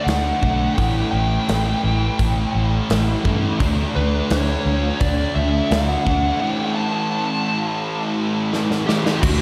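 Dreamy, blissful shoegaze and dream pop rock at 85 BPM in a straight 4/4, this short cut from a longer piece sets a dark, fuzz-soaked lead guitar melody with analog delay over a thick, double-tracked fuzz riff guitar with analog chorus sitting up front, a round, foam-muted vintage fingered bass, and a big acoustic rock kit with punchy kick, bright cymbals and a drum fill from 8.5 to 9.2 seconds, all bathed in a lush hall reverb as the chords move between D, A5 and Dmaj7.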